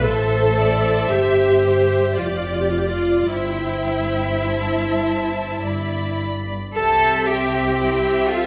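An up-front, rich-toned viola section carries the accompaniment in this tender, lyrical slow movement for string orchestra, cut from a longer piece, in 3/4 at 50-61 BPM with a rubato feel in C major. Above it, a dark violin section sings the melody with expressive vibrato and portamento, while a second violin section adds a smooth, close-sounding line. Cellos and a focused, lush double bass section anchor the harmony from Am through Dm/F and C/G to a settling C at 6.8 seconds, all bathed in the reverberant glow of a recital hall.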